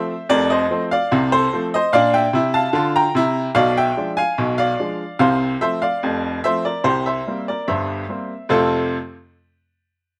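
The sound is dry and close, captured outdoors with little reverb, so the baby grand sits up front with a natural, clear tone and short sustain, touched by a slapback echo. This is a short, jaunty piece of ragtime piano in 2/4 with a straight feel, cut from a longer performance. The solo piano ranges from a deep F1 up to Bb5 and plays from the start until 9.0 seconds. Its cheerful harmony moves from F to Bb, through a Bdim7 and F/C, and on to C7 before landing back on F at 8.5 seconds, where a new section begins. The effect is clear and cheerful, a brief, sunny glimpse of the style.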